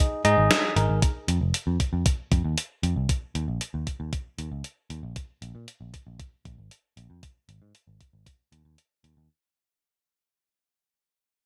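A bell-like tine electric piano opens this short synthwave excerpt with bright, clean stabs that carry a vintage 12-bit sampler grit and a digital delay, sounding only in the first second. A picked electric bass enters at 0.2 seconds, dark and round through a low-pass filter, and holds down the low end until the close at 9.3 seconds. A gated 80s digital drum machine arrives at the same moment with hi-hat and a snare steeped in gated reverb, its tape-softened, small-room character sitting up front, while an electronic kick drum adds a thumpy pulse from 1.0 to 8.4 seconds. At 116 BPM in a straight 4/4, the cinematic, moody passage moves through Ab, F, Eb and Bb chords before the harmony drops away, and the whole passage fades out. A moderate plate reverb and bright 1980s-style digital production give it a polished sheen.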